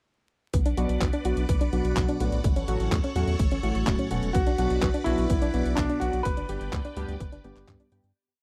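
A punchy four-on-the-floor kick and a tape-softened machine beat of claps and closed hats open this short, melodramatic italo disco piece together with a deep, round sequenced sixteenth-note bass up front, a swirling phased string pad and a mellow arpeggiated pluck in the background, with glossy chorused polysynth stabs on the off-beats arriving at 0.8 seconds. At 4.3 seconds a clear, intimate grand piano, its action noise audible, adds a nostalgic song-like motif and carries it into the fade-out that begins at 5.6 seconds. The sound is dry and close, like a 1970s studio recording, with a layer of vinyl crackle.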